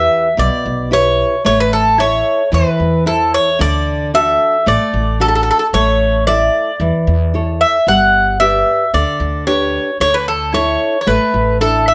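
Sunny and warm in mood, this short excerpt of Greek folk music moves at a steady 112 BPM in a straight 4/4, set in D major. The bouzouki carries the melody up front throughout, its bright, metallic double strings picked with some octave-doubled courses ringing between A4 and F#5. Beneath it, a nylon-string guitar fingerpicks a classical-style accompaniment on fresh strings, while an upright bass plays pizzicato on gut strings with a woody, thumpy, dark tone low in the register. The harmony travels from Em through Am, D, A and G before settling on Dsus2 at 10.0 seconds. All three instruments play together for the full 11.9 seconds, heard in a moderate studio reverb with a softened top end.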